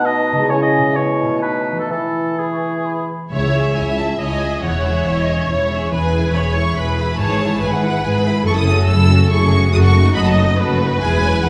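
A lush violin section carries the melody from 3.3 s in this cheerful, spirited classical excerpt in 3/4, which moves with rubato at 125-143 BPM as the key turns from E major to C# minor. Before that, an up-front oboe, a dark clarinet, a bassoon and a mellow, hollow flute group in the background share the opening over a ringing harp that plays arpeggios throughout. A second violin line, a rich viola section, an expressive cello section and a distant double bass section then take over, all set in a wet recital hall reverb.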